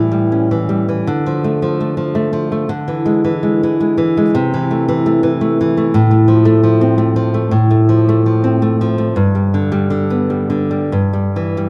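A dark, fingerpicked nylon-string guitar sits up front in this melancholic, passionate romantic solo classical piece, cut from a longer work, moving in a rubato 3/4 through A7, Dm, E7/D, Am/C, F/A and G before resting on C/G at 10.9 s, with finger squeak audible in a moderate recital hall reverb and lossy compression artefacts.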